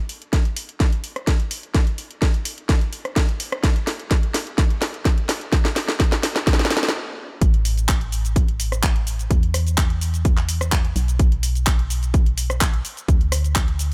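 A house drum kit of handclaps, hi-hat, rim click, shaker and cracking snare opens this euphoric, joyful piano house excerpt at 127 BPM, joined at 0.3 seconds by a punchy, layered electronic kick, both up front with a small-room character, building through a drum fill before a brief stop at 6.9 seconds. At 7.4 seconds the drop lands as an organ-like FM bass enters, hollow and dark with a fast, percussive attack and sidechain pumping, moving between A1 and E2. The mix stays dry and close, with little reverb.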